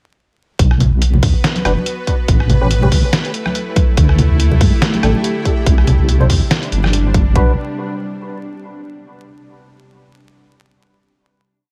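Vinyl crackle runs through this dark, heavy deep dubstep piece in B phrygian at 142 BPM, and at 0.6 seconds the drop lands with an overdriven, punchy electronic kick, a muffled, pitched-down sampler-style kit of hi-hats, rim clicks and snare in a swung half-time beat, and a deep, detuned wobble bass with chorus carrying a dub-style line up front. Soft echoing congas sit in the background, a tense, string-like drone holds sustained chords with vibrato and reverb, and a hollow, nasal organ stab scatters sparse chord hits through chorus and dub echo over a progression moving from B5 through A7, Dsus4 and Cadd9. At 4.6 seconds a flickering, grainy high note drifts in behind, before the piece settles on a final Bm chord at 7.4 seconds.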